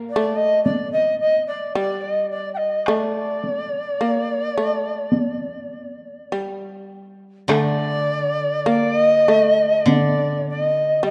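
A dark production set in a moderate concert hall reverb frames this calm, austere fragment of Japanese chamber music in D miyako bushi, moving in a rubato 4/4 at roughly 50-55 BPM. An airy, reedy shakuhachi carries the melody up front with vibrato and chiff, over a buzzing, plectrum-plucked shamisen second line and a taiko ensemble struck with hard sticks, its sound compressed and saturated. At 7.5 s a dry, woody koto played with fingerpicks joins as accompaniment for the closing section.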